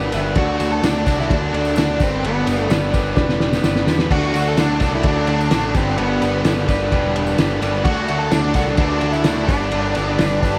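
A cloth-damped, thuddy drum kit with a fat snare and dark cymbals sits up front in this confident, sunny classic rock excerpt at 128 BPM in D major, where a dark octave-fuzz lead guitar carries the melody from 0.4 s over a punchy fuzz bass, a bright distorted guitar riff, a clear grand piano and a jingly, distant tambourine, and a cranked stack guitar adds a second riff at 4.1 s after a drum fill, over chords alternating between D and G in a big arena sound with slapback echo on the guitars and piano.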